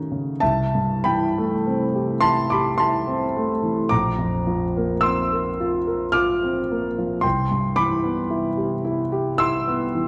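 Luminous and serene, this brief passage from a longer impressionist classical work unfolds for solo concert grand piano in a slow, rubato 3/4 at around 47-56 BPM, moving from C6 through Bbadd9 to Cmaj7 at 7.2 seconds. The piano sits up front with an intimate, natural tone, its range spanning deep bass down to Bb1 and upper notes up to F6, and the clatter of its action audible beneath the notes. A dark, warm production places it in a reverberant recital hall whose 1.4-second decay lets each chord bloom and linger.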